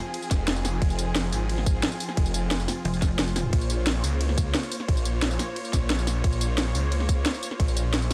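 A snarling, growling saw bass with distortion, overdrive and sidechain pumping drives this dark, aggressive, mechanical drum and bass cut at 177 BPM. Alongside it are a tight, up-front electronic kick, a layered kit of cracking snare, hi-hat, ride cymbal and tambourine, and lush bowed symphonic strings that open the cut holding sustained chords moving from Fm to Bbm at 3.5 seconds. A brief pulsing, saturated pluck wobble bass with chorus appears from 2.9 to 3.5 seconds, all set in a dark digital ambience.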